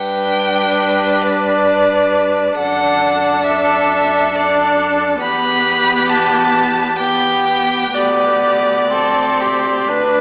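Serene and gently warm, this brief excerpt from a slow romantic movement for string quartet moves in an unhurried 3/4 at roughly 62-69 BPM, its rubato pulse letting the phrases breathe. Set in G major, the harmony passes from G through D/F#, E minor and G/D over about 10 seconds. Up front, the first violin carries the melody high in its range with a smooth, even tone and light vibrato, and its line falls silent at 9.9 s while the others continue to the end. The second violin adds a focused second line from a more distant position, and the viola, clear and smooth, fills in the accompaniment close to the listener. Beneath them, the cello holds a low, focused bass that sits well back in the balance. A recital hall reverb with a 1.4-second decay surrounds the quartet in a church or concert-hall space, though the overall sound has the compact quality of a small speaker.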